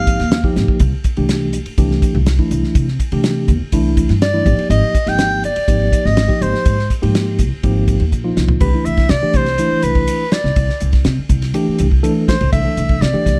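Slick and funky, this electric jazz fusion excerpt moves at 123 BPM in a straight 4/4 in C major, with a dark production under light reverb. A mellow, clean tine electric piano and a woody, thumpy pizzicato upright bass carry the Abmaj7sus2 and Cadd9 harmony, while a dry, damped 70s drum kit with a fat snare, tight kick and dark cymbals punctuates the groove with fills at 0.6 and 8.1 seconds. Up front, the soprano saxophone plays a jazz-style solo with vibrato, subtone and scooped notes bathed in plate reverb, sounding briefly at the start before returning at 4.2 seconds.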